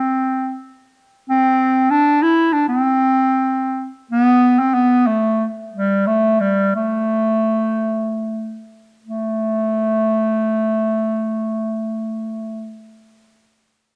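A lone clarinet opens this klezmer fragment in free time, its clear, classical-style tone held up front as it plays in A minor, tuned to A4 = 442 Hz, within a range from G3 to E4. The mood is bittersweet yet festive, with the line slowing down between 4.8 and 9.1 seconds before a new passage begins and the clarinet stops at 12.8 seconds. A cassette-tape character colors the clarinet, and the home recording adds a moderate spring reverb and a small room ambience to this piece cut from a longer performance.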